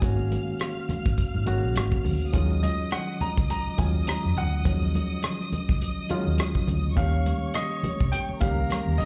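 A barky, reedy electric piano sits up front in this silky, cinematic slice of lush 1970s-style soul, its lightly overdriven tone shimmering with fast tremolo and slapback echo over chords moving from Ab9sus4 through Ebm11 to Eb7 at 7.0 seconds. A clear grand piano carries the melody with its own slapback echo, while a smooth, bowed studio string section adds a vibrato-rich second line. Underneath, a round, foam-muted fingered bass, a dry, tight acoustic drum kit on hi-hat, kick and rim click, and very quiet ringing congas keep a swung groove, all heard live through a club PA with club reverb.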